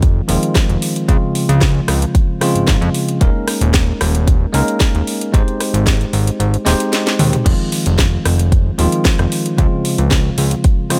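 Nu-disco at 113 BPM in F minor with a sensual, cosmic mood, cut from a longer piece, where a bell-like, bright tine electric piano with sidechain pumping and tape echo moves through Fm7, Dbmaj7, Eb7sus4 and Abmaj7 over a fat, detuned sawtooth analog bass, a punchy electronic kick that drops out at 6.4 seconds, and a house drum kit with a cracking snare and metallic hats whose fill at 6.7 seconds leads back into the groove at 7.5 seconds, all in a dry, up-front mix.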